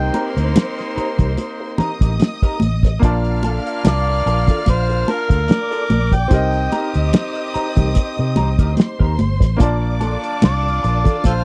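An overdriven, gritty harmonica carries the melody up front with tongue slaps and scooped notes, set over a lush 1970s-style soul groove at 73 BPM that alternates Cm7 and Bbmaj7 in a romantic, smooth mood. A foam-muted, round electric bass and a cloth-damped drum kit with a fat snare and tight kick sit close, joined by bright, high-tuned congas, a slightly broken-up guitar riff through a wah, distant horn stabs, a lush bowed violin line and a clear grand piano in the background. A delicate, slightly out-of-tune celesta adds very quiet bell-like touches at 3.8 and 10.4 seconds, all captured in a dry, close studio sound in this short cut from a longer piece.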